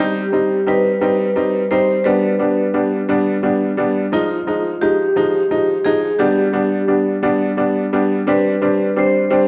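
In a straight six-eight feel, this aching, melancholic pop ballad fragment of 9.5 seconds sets a ringing, metallic vibraphone melody, struck with medium hard mallets and carrying a medium motor vibrato and analog delay, just behind a brilliant, woody upright piano accompaniment with short sustain that sits up front, all bathed in the wet reverb of a recital hall.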